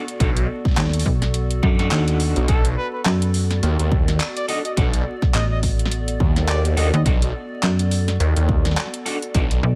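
A warbling, nostalgic pad sustains a dark B7#9 chord through chorus and sidechain pumping to open this funky, gritty glitch hop excerpt at 105 BPM with a swung 16th-note feel, soon joined by a punchy layered electronic kick, a pop kit of fat snare, handclaps and metallic hats, picked stabs from a slightly broken-up electric guitar with tremolo and tape echo, an up-front pair of basses (a swirling, thick phased saw and a snappy FM slap with a metallic attack), and a close-miked, classical-style solo trumpet carrying vintage 12-bit sampler grit and tape echo from 2.5 s to 7.0 s, all set in a dry mix under a layer of vinyl crackle.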